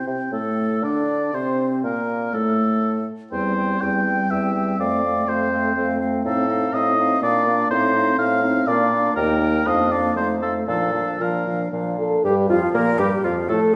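Up front with light vibrato, the warm oboe carries a second line alongside the airy, straight-toned concert flute's tongued melody in this spirited, cheerful passage from a quick classical-period wind quintet movement in a rubato 3/4, while the clear clarinet sits in the background, the mellow French horn fills in the accompaniment, and the smooth-topped bassoon holds the bass from 0.1 s, the harmony turning toward Bb from 6.3 s, all set in a wet recital-hall reverb.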